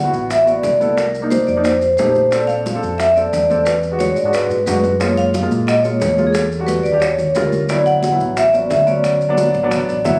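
A phone recording made in the room, compressed and carrying club reverb over a moderate large-studio ambience, captures a sophisticated, lively Afro-Cuban jazz excerpt where an up-front, metallic vibraphone with medium motor vibrato carries the melody over a present, long-sustaining baby grand piano, a dark, punchy fingered electric bass, saturated low-tuned bongos, very quiet high-tuned congas and grainy, mellow maracas, moving through rich extended chords from D69 back to D69 before a drum fill at 9.4 seconds.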